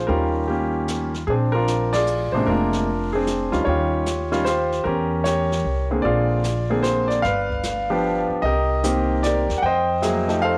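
A clear, up-front grand piano carries the melody with a slapback echo in this sophisticated, relaxed jazz piano trio excerpt, swinging in 3/4 at 151 BPM in B-flat mixolydian, as a woody, thumpy pizzicato upright bass with gut strings and a brushed drum kit with dark cymbals and a boomy kick support it through changes like Eb9, Bb9, Edim7 and G7, with a band accent at 1.9 seconds, all set in light reverb and studio ambience.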